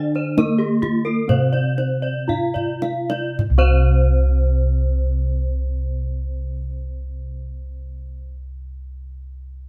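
Bronze metallophones and bossed gongs ring out together in this shimmering, brilliant Balinese gamelan excerpt, where a dark, smooth wooden-mallet melody with paired-tuning beats sits over round, mellow gongs up front and a low horn-mallet accompaniment in the background, two bright horn-mallet arpeggio lines (one also airy) glitter above, and as the opening slows, a deep, close kendang plays a fill from 2.3 to 3.4 seconds before dropping out at 3.9 seconds, all heard in a moderately reverberant room.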